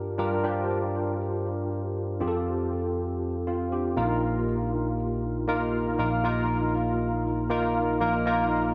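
A lone tine electric piano opens this short pop fragment on a Gm7 chord, its tone bright and barky, clean and direct, placed up front in the mix. The mood is dramatic and urgent, moving at 119 BPM in a straight 4/4 feel. An ensemble chorus thickens the piano, and a moderate plate reverb gives the sound a lingering tail. The instrument covers a broad span from Bb1 up to C5, carrying the whole 8.7 seconds by itself. At 2.2 seconds the harmony shifts to Fadd9 as a new section begins, then settles on Bbsus4 at 4.0 seconds, the passage having been cut from a longer piece.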